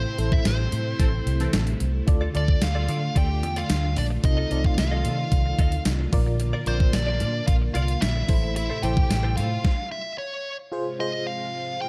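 Dramatic and moody, this short excerpt from a longer 1980s-style pop piece moves at 111 BPM in a straight 4/4. A nasal, overdriven lead guitar with a parked wah carries the melody throughout, with delay trailing it, while a rich studio violin section plays a smooth, bowed second line in the background until 9.9 seconds. Underneath, a mellow FM electric piano with tremolo and a lush string machine with ensemble chorus hold the harmony through Am, Dm, F7/C and Bb. A round, foam-muted fingered bass and a thumpy, overdriven 12-bit drum machine with gated reverb, kick, snare, hi-hat and tambourine sit up front, joined by a brief, punchy polysynth stab near the start and a picked, compressed clean guitar riff from 2.1 seconds. The band hits an accent at the opening, then the bass and drums drop out for a stop at 9.6 seconds before the harmony shifts to Fm at 10.7 seconds, all in a dry mix with little reverb.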